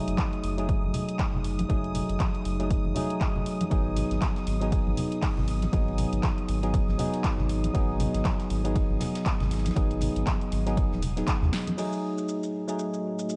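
A smooth mix with light small-room reverb and a top end that stops short of the highest treble opens this cut from a longer deep house track, moving at 119 BPM in 4/4 with a 58% swing on the sixteenths and sitting in F# dorian. A clean tine electric piano, up front through a combo amp, plays chord stabs with subtle chorus, tape echo and sidechain pumping over an F#m69 to G#m7 progression. A round, nasal analog bass with tube saturation pumps beneath it. A punchy electronic kick re-recorded in a large room drives the groove alongside an analog drum machine supplying crash, handclaps, hi-hat, shaker and snare, with congas in the background adding acoustic percussion, and a silky string machine hovers high with phaser and ensemble chorus. From 3.7 seconds a loose indie drum kit joins far back in the mix, its hi-hat, ride and medium-tuned snare high-pass filtered and rolled off at the top. 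After a drum fill at 11.5 seconds the harmony returns to F#m69, and a moody, detuned ambient pad with chorus and 12-bit sampler grit enters at 12.4 seconds, lending the closing moment a dusky shade.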